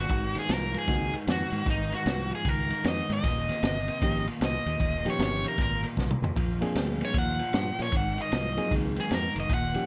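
Dry, this gritty, soulful electric blues shuffle puts a smooth, overdriven lead guitar solo up front throughout, over a slightly broken-up rhythm guitar riff with harmonic tremolo in the background, a round fingered bass, a saturated small-room breakbeat kit with punchy kick, high-tuned snare and dark cymbals that plays a fill at 6.0 seconds, and a reedy, clean electric piano that appears briefly at 0.9 seconds before returning at 4.0 seconds.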